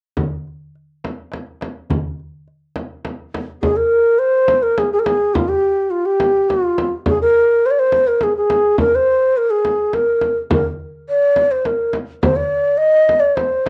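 This excerpt from an Arabic maqam ensemble piece opens with a clay-shelled darbuka and a deep, large frame drum, both played with soft hands, in a straight 3/4 at 104 BPM in C maqam bayati. At 3.6 seconds a breathy, mellow ney enters up front, its tongued straight tone carrying a melancholic, longing melody between F4 and Eb5 with rolled-off highs, cassette tape coloring and plate reverb. The frame drum continues throughout, the darbuka returns at 10.5 seconds, and the whole sits in a small room as a home cassette recording.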